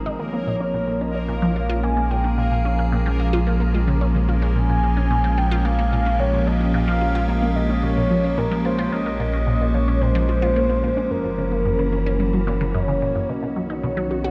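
An evolving, morphing wavetable pad sustains chords over a deep, round sub bass from the start, while a bubbling stepped-filter texture sits in the background until 13.3 s, in this cosmic, expansive stretch of ambient, sequencer-driven space music at 110 BPM in 4/4. A squelchy, resonant blip pluck with phaser and delay plays a riff, and a mellow horn-like synth lead with vibrato and subtle chorus carries the melody over chords moving from Bbm7 to Gb7 at 11.1 s and Badd9 at 13.3 s. A moderate plate reverb and heavy echo give the mix its spacious depth.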